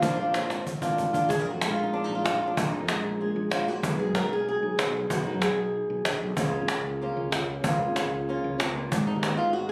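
A fingerpicked flamenco guitar sits up front and carries the melody, its tape echo and audible finger squeaks giving the line a close, lively presence. The mood is fiery and intense at a brisk 189 BPM in straight 4/4, in this short cut from a longer piece. A snappy cajon with snares, played with soft hands and placed up front, plays a fill from 0.5 to 1.3 seconds. Beneath them, a woody fretless electric bass adds a growly, round, dark low end. At 1.3 seconds the piece moves into a new section, with the harmony shifting from Bb through Bb7sus4, B6 and Db6 before landing on Abm. The sound has a moderate studio reverb but was captured on a phone in the room, lending it a raw, immediate character.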